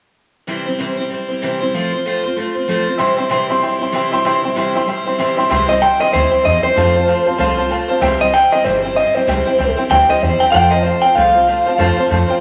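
A bright, picked dreadnought acoustic guitar opens this upbeat, rollicking rock excerpt at 0.5 s, picking through C and F at a brisk 191 BPM in 4/4 with a swung eighth-note feel. At 3.0 s a warm, worn, slightly detuned upright piano joins in its upper register, its open, woody tone and short sustain adding warmth to the accompaniment. The piano drops in brief fills, and the second section begins at 5.5 s when a woody, thumpy pizzicato upright bass with steel strings enters. Just after, an electric guitar through a small old amp takes the melody, twangy and slightly broken-up, sitting up front and louder than the rest. The whole band plays in a wet, large studio reverb, which adds a lively sense of space to the loose, good-time groove.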